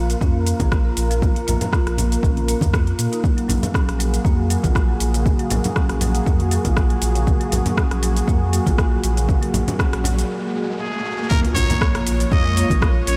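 A nasal, raspy trumpet with a straight mute enters at 10.8 seconds, playing a gritty jazz-style solo with scooped notes, light vibrato and a growling edge, its line trailing into analog delay. Beneath it runs a hypnotic, driving afro house groove with a light swing: a punchy, up-front electronic kick, a deep house kit of metallic hats, rim click and shaker, and very quiet, bright congas struck with hard hands. A round sine sub bass sustains under a moody, full-bodied sawtooth pad that holds chords with chorus, both pumping against the kick. A woody marimba on padauk bars sits in the background with smooth arpeggios, echoed through analog delay. An electronic riser starts at 9.5 seconds, leading through a short break into the drop at 11.3 seconds, where an impact lands and the harmony settles on B-flat minor under light reverb.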